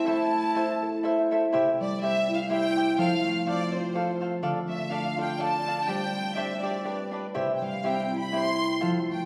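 A rich chamber violin section carries the melody up front, its focused, bowed ensemble tone shaped by vibrato in this proud, romantic mariachi passage in a lilting, swung three-four. Beside it, a concert harp rings out just as prominently, its warm, fingerpicked arpeggios spanning low to high throughout. A cavaquinho supplies mellow, crisp picked accompaniment from 0.1 seconds to 9.0 seconds. A clear trumpet with a soft attack and classical poise sits in the background, sounding its second line on E4 only until 1.0 seconds. The harmony opens on A minor, then moves through C, F and D minor before a suspended G settles onto G and resolves home to C. A lush recital-hall reverb surrounds the ensemble, giving this fragment of a longer piece a spacious, church-like glow.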